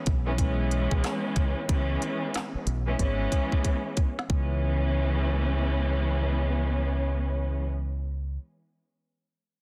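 A deep, round fingered electric bass anchors this gritty, moody boom-bap hip-hop excerpt, its dark, punchy tone sitting up front from 0.1 s to 8.4 s in C# minor over a C#m7 chord. The tempo is 92 BPM in 4/4 with a 62% swing on the sixteenths, and the tuning sits slightly low at A4 = 436 Hz. An organic electronic drum kit with a tight kick, woody snare, smooth hi-hats and handclaps drives the groove until 4.5 s, closing its run with a fill from 3.0 s. A lush, bowed studio string section adds expressive vibrato and portamento in the accompaniment, shaped by high- and low-pass filtering, with a distant quality even while placed up front. The mix carries studio reverb and a dense, heavily limited modern master, moving from an opening section into a second one at 4.3 s.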